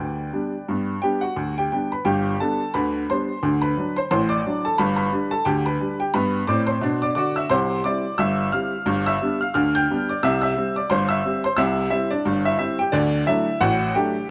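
Lightly reverberant and up front, this jaunty, lively ragtime fragment in G major moves at 88 BPM in 2/4 with a swung sixteenth-note feel, carried entirely by a solo upright piano whose clear, woody, slightly detuned tone and long sustain span from G1 to G6, with a new section arriving at 2.1 seconds.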